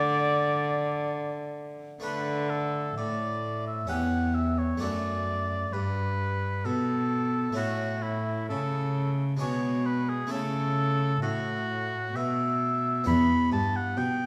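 A baroque-style sonata movement with continuo, cut from a longer piece in D major, moves at a radiant, dance-like 65 BPM in a straight 3/4. A solo oboe carries the melody up front with a soft attack and light vibrato, while a close, bowed cello with a reedy, gut-string period tone holds the bass and a full, plucked harpsichord on two sets of strings fills in the harmony. All three play throughout, passing through chords such as D/F#, A and G#dim/B before settling on Em, heard from further back in a wet recital hall.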